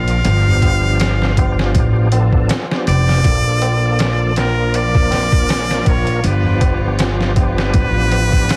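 A nasal, straight-muted trumpet carries the melody of this melancholic, brooding trip hop excerpt, played with vibrato in a classical style and colored by tape echo. Beneath it, a thick tonewheel organ comps with light overdrive, key click, chorus vibrato, tremolo, a fast rotary speaker and its own tape echo, while a dark string section sustains lush, sul tasto chords in the background. A woody pizzicato upright bass anchors the low end, and at 0.1 s a gritty, pitched-down sampler-style kit arrives up front with a thumpy kick, medium-tuned snare and hi-hat, joined by a low-tuned, ringing tabla set far back. The groove sits at 80 BPM in 4/4 with a light 16th-note swing, tuned to A4 = 444 Hz, and moves between G7 and Bbmaj7. Light reverb, vinyl crackle and a dense, heavily limited master give the whole a hazy, compact feel.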